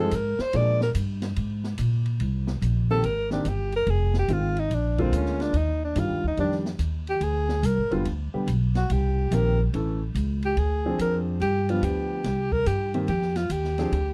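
A clear, up-front alto saxophone with vibrato and a soft attack carries the melody over a warm baby grand piano with audible action noise, a woody pizzicato upright bass and an open jazz drum kit with dark cymbals and a boomy kick, swinging at 143 BPM in C minor through a cool, late-night small-group bop passage cut from a longer piece, caught in a dry, close 1970s-style studio sound and moving into its second section at 2.2 seconds.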